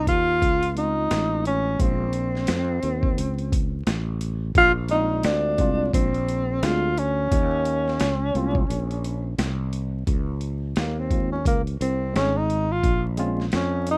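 Smooth and cool, this jazz-hop clip in swung 4/4 sets a dark, breathy tenor saxophone with vibrato and scooped notes up front over a growly, punchy fretless electric bass, a gritty, compressed boom bap sampler-style drum kit with a thumpy kick and high-tuned snare, and a worn, slightly out-of-tune tine electric piano lightly overdriven in the background, heard through a rough home demo mix with vinyl crackle and little reverb, as a break at 8.7 seconds gives way to a saxophone solo from 10.1 seconds.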